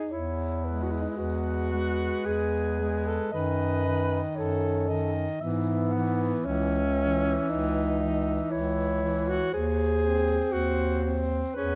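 A mellow, up-front alto saxophone with vibrato carries the second line in this serene, lyrical classical excerpt for single-reed quartet, unfolding at a rubato 57 BPM in 3/4 and E major, while a dark, soft-attacked clarinet sings the melody from a roomy distance, a warm tenor saxophone accompanies, and a clear, close-miked bass clarinet holds the low end, all captured in a detailed recording with light reverb as the harmony passes from E through F#m6 and C#m to G#7/D#.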